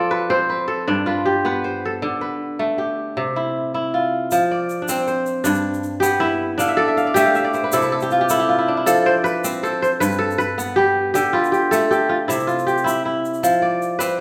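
A fingerpicked kora carries a joyful, flowing West African traditional melody in 12/8 at 105 BPM in F lydian, its crisp, ringing tone up front over a second, bright kora weaving arpeggios from G2 to F5, with a grainy, close tube shaker joining at 4.3 seconds as the kora takes a solo and a brief fill around 6.6 seconds, all set in a moderate recital-hall reverb in this excerpt from a longer piece.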